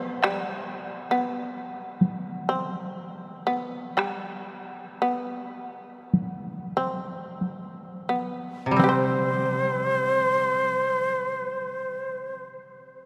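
A breathy, bright shakuhachi carries the melody on C5 from 8.8 seconds in this calm, austere fragment of Japanese chamber music, entering after a close, dry taiko ensemble and a buzzing, plectrum-plucked shamisen second line have opened in a rubato 4/4 at 42-68 BPM that gradually slows, while a woody koto accompaniment joins beneath it and a wet cathedral reverb fills the space.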